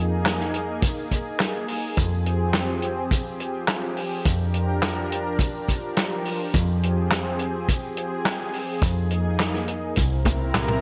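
Synthwave at 105 BPM in a straight 4/4, nocturnal and moody, this short cut opens on a lush, detuned sawtooth unison pad with chorus, vintage 12-bit sampler grit and sidechain pumping, sustaining chords that move from Bb7sus4/F through Fmadd9 and Bb6/F before landing on C7 at 10.0 seconds. Underneath from the start, an overdriven picked electric bass sounds dark and round with a foam-muted tone, pumping with the sidechain, while a dry, mid-forward soul kit of handclaps, hi-hat, medium-tuned snare and toms enters at 0.3 seconds and a tight kick joins at 0.8 seconds, both drum parts treated with gated reverb. A drum fill closes the passage at 10.3 seconds, all set in a small room with light reverb and a rolled-off top end.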